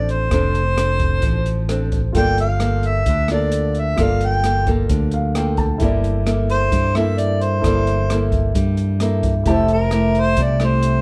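A dark, warm production with light reverb frames this smooth, intimate bossa nova excerpt, which moves at 131 BPM in a straight 4/4. A mellow harmonica carries the melody with light vibrato, a soft attack and scooped notes, sitting up front yet with a distant, roomy quality in a jazz style. Beneath it, a fingerpicked nylon-string guitar gives small, intimate accompaniment, while a fingered electric bass sounds round and punchy, direct and amped, close to the listener. An open jazz drum kit in a small room keeps hi-hat, boomy kick and rim click with a rolled-off top, and a natural baby grand piano joins in the background at 2.1 seconds, adding a brief fill around 4.9 seconds. The harmony moves from Dm7/F through Gm9 and C13/G before settling on Fmaj9.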